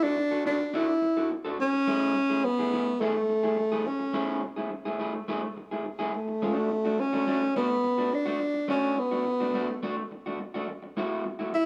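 Disco at 106 BPM with a sultry, driving mood, this short cut from a longer piece features a dark, breathy tenor saxophone soloing up front in a jazz style with soft attacks, scooped notes and a smooth top, over a picked, slightly broken-up electric guitar from a small old amp that moves through Bm11, Amaj7, Bm7 and F#m7, all set in a moderate echo-chamber reverb.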